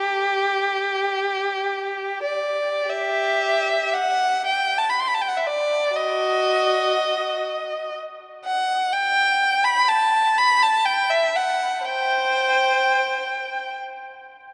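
Mournful and lonely, this fragment of a free, expressive classical piece features a single bowed violin played alone, up front, from 0.0 to 13.7 seconds. The violin's tone is rich, with vibrato, soft attacks and portamento gliding between notes across a span from F#4 to C6, while the rubato and uneven beats in 6/8 give the line a searching, unhurried feel. A cathedral reverb with a five-second tail surrounds the solo line, and the opening idea returns at 2.9 seconds.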